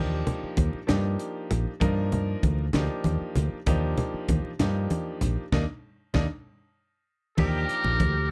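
Electric jazz fusion in a straight 6/8 at 65 BPM, counted in dotted quarters, this short cut from a longer piece sits in Eb major and feels bright and slick, resting on a single Ebmaj9 chord. A woody fretless electric bass sits up front with a dark, growly, round tone, while a bright grand piano comps in an intimate way, its action noise audible. A crisp fusion drum kit in a small, pumping room, with a high-tuned snare and punchy kick, enters at 0.3 seconds alongside congas struck with hard hands, their thin skins close and dry in the background. The band hits an accent from 5.5 seconds, and from 6.5 to 7.4 seconds the drums and piano both play fills. At 7.4 seconds a trumpet with a metal mute steps up front with a buzzy, raspy, vintage solo voice full of vibrato and scooped notes, joined by an overdriven electric guitar, picked and treated with phaser, on a second line, all in a dry mix with little reverb.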